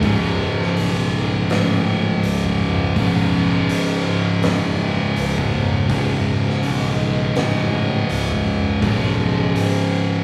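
A rough rehearsal-room recording with saturation and a small, lightly reverberant room gives this stoner and doom metal excerpt a raw, close feel. Two thick fuzz guitars drive low riffs between C#2 and C#3 over a C#5 chord at a slow 82 BPM in 4/4, with a 60% swing on the eighths. One guitar sits up front while the other stays dark and distorted in the background, and underneath them a fingered electric bass growls, bright, punchy and overdriven, from C#1 to C#2. The oversized low-tuned drum kit plays kick, fat snare and hi-hat in a pumping stone room, gritty and saturated, and drops out at 9.8 s while the rest carries on to 10.2 s. Behind it all, a barely audible tonewheel organ holds sustained chords with a piping, scooped tone, key click and chorus vibrato, adding to the ominous, sludgy mood.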